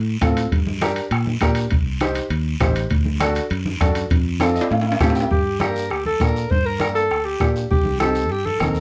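The recording has a light reverb and captures a fiery, danceable cumbia cut from a longer piece. A dark, round fingered electric bass sits up front and starts just ahead of the band. A clear, woody upright piano carries the accompaniment with long sustain and audible action noise. The percussion comes from a vintage, band-limited bombo with a soft beater, ringing congas played with soft hands in the background, a raspy guiro, and metal-shell timbales. A drum fill and a piano fill arrive at 4.4 seconds, and at 5.3 seconds the timbales drop out as a breathy alto saxophone takes the solo melody, distant and roomy with a plate reverb and light vibrato.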